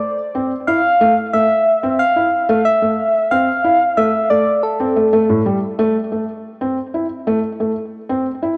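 A dark, warm production bathed in a lush hall reverb opens this melancholic, eerie IDM fragment at 91 BPM in A minor, where a round, gentle FM synth lead with chorus, vibrato and tape echo carries a melody from the start until 5.6 seconds while a felt-muted upright piano, mellow and intimate through a low-pass filter and delay, plays arpeggios over an A minor chord from 0.3 seconds to 8.5 seconds.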